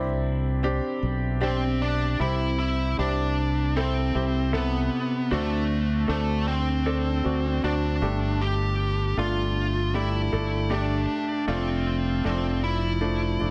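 A dense, heavily limited modern mix with light reverb and studio ambience frames this tender, heartfelt pop excerpt in C major at 78 BPM, where a clear grand piano and a growly, punchy fingered electric bass play from the start through chords moving from Gsus4/C to C, D7, Gsus2 and F6, and a smooth, overdriven, picked lead guitar enters at 1.4 seconds to carry the melody up front.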